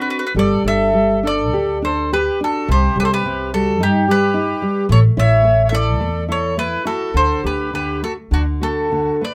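A mournful, passionate fado-style ballad fragment opens with a round, up-front mandolin on double strings picking out the melody, a reedy, dark accordion with slow beating on a smooth second line, and a full-bodied, fingerpicked nylon-string guitar accompanying with a deep classical character. At 0.3 seconds a woody, pizzicato upright bass on steel strings joins up front, and the piece moves in a free, rubato 4/4 inside a moderate small-room reverb.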